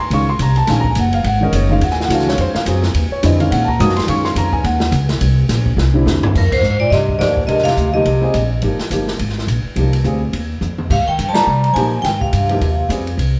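Spiritual and cool, this swinging modal jazz excerpt opens with an intimate grand piano with audible action noise, a woody, dark pizzicato upright bass up front, and an acoustic drum kit with dark cymbals and a boomy kick, heard from further back in a large studio room. After a drum fill at 5.8 seconds, a new section begins, and from 6.4 seconds a ringing, close-miked vibraphone with slow motor vibrato carries the melody, while a clear bass clarinet with scooped notes plays a second line. Band accents punctuate the passage, and after a drum fill at 10.6 seconds the vibraphone and clarinet return.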